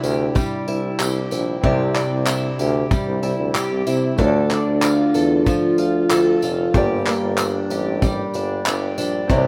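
Acoustic pop at 94 BPM in 4/4, this reflective, wistful excerpt moves through Cadd9, Dm and Gm as an up-front picked twelve-string acoustic guitar, dark and woody with a shimmering octave-doubled ring, carries the accompaniment over a slightly detuned, warm upright piano in the background. A clear, vintage-sounding tuba plays the bass with scooped notes, while a soft brush drum kit with a tight kick, handclaps and tambourine sits close and mellow with a rolled-off top. A jingly, distant tambourine adds a further layer of percussion, all set in light reverb and tuned to A4 = 439 Hz.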